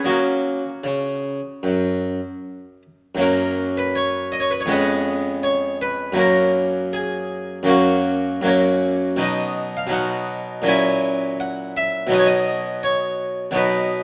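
Flowing and dance-like, this baroque-style suite movement for solo harpsichord moves in 4/4 at around 76 to 84 BPM with a supple rubato, set in F# major and tuned to A4 = 441 Hz. The Flemish-style instrument sits up front with a brilliant, airy pluck and a full body from its three sets of strings, spanning E#2 to G#5 across the 14-second excerpt cut from a longer piece. Its harmony passes from F# through C#7/E# and back, then turns toward B by 9.2 seconds, while a wet scoring-stage reverb gives the room a long, spacious tail.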